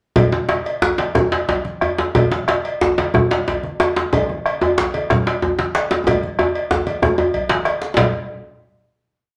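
In a moderately reverberant large studio, this short, earthy and festive West African traditional drum ensemble piece moves in 12/8 at 123 BPM and speeds up throughout, as a compressed, saturated, cracking lead djembe plays phrases up front over a tight djembe in the background, a deep, dark bombo, bright, thin-skinned, low-tuned congas and a metallic cowbell bell pattern, before a drum fill from 6.1 seconds leads into a final hit at 8.0 seconds.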